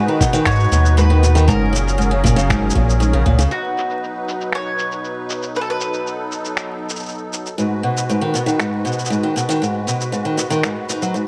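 Playful and warm, this short folktronica excerpt in B major moves at 118 BPM in a straight 4/4, with a mellow, double-strung bowl-back mandolin melody carrying a delay over reedy, shimmering musette accordion chords and up-front picked acoustic guitar arpeggios that drop out between 3.5 and 7.6 seconds, while a muffled, thumpy, pitched-down kick and a round sine sub bass drive only the opening, filtered tape-warm shaker and finger snaps tick on throughout, and light studio reverb and vinyl crackle colour the sound.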